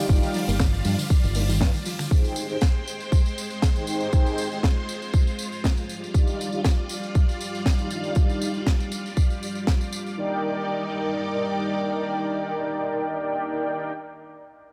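A punchy, layered electronic kick drives a straight 4/4 groove at 119 BPM, joined by a tight, dry funk kit with a high-tuned snare, hi-hat, finger snaps and tambourine, while a separate vintage, band-limited tambourine part adds a faint shimmer; the drums drop out at 9.8 seconds. This sunny, groovy nu-disco fragment sits in Eb major, moving from Ebmaj9/G to Abmaj7 and back before settling on Ebmaj7. Up front, a mellow synth brass built from detuned sawtooth and square waves carries the accompaniment with a dark, round tone, chorus, vibrato, dub echo and sidechain pumping. Behind it, a lush string machine ensemble holds slow-attack chords with ensemble chorus and gritty 12-bit sampler character, while a filter sweep on an analog polysynth runs through the opening ten seconds. At the start, a bright fingered electric bass with an envelope filter plays only briefly, and a soft, gentle pluck plays background arpeggios with dub echo. 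The whole piece sits in a light reverb.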